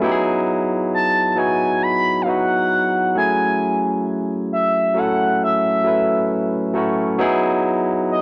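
A barky tine electric piano opens this slow, sensual R&B passage, its bright, clean tone coming through a combo amp and sitting up front as it lays down the accompaniment. At 0.9 seconds an expressive synth lead enters with the melody, blending sawtooth and triangle waves into a smooth, mellow voice with a soft attack, sustained notes, chorus and vibrato. The groove moves at 67 BPM in 4/4 with a gentle swing on the sixteenths, and the harmony in E major drifts from Emaj7 to F#m9 at 3.2 seconds before settling back on Emaj7 at 7.2 seconds. A moderate plate reverb with a 2.5-second tail surrounds the dark production and gives the short cut a soulful atmosphere.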